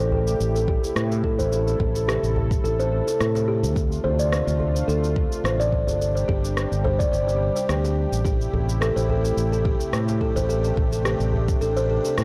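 Dry and gritty with transformer saturation and cassette-tape character, this earthy, mystical organic downtempo excerpt sets a buzzing, woody kalimba arpeggio, shaped by a filter sweep and analog delay, over a smooth, detuned sawtooth pad with chorus, tremolo and sidechain pumping, while a dark, round fretless bass sits up front and a deep, layered electronic kick joins at 0.7 s beside electronic cabasa, rim click and a very quiet, cracking djembe, as the chords move through Am7, Dm7 and Gsus4 with a light swing.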